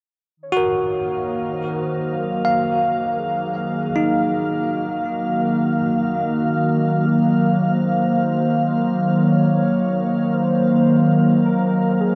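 Spacious and melancholic, this slow ambient passage in Eb dorian at 55 BPM rests on an Ebm7 chord, where a glassy, warbling FM pad holds sustained chords up front, a bell-like tine electric piano spins bright arpeggios through diffuse delay from 0.5 seconds, and a velvety synth lead with vibrato fades in quietly on the melody, all bathed in a huge, dark reverb.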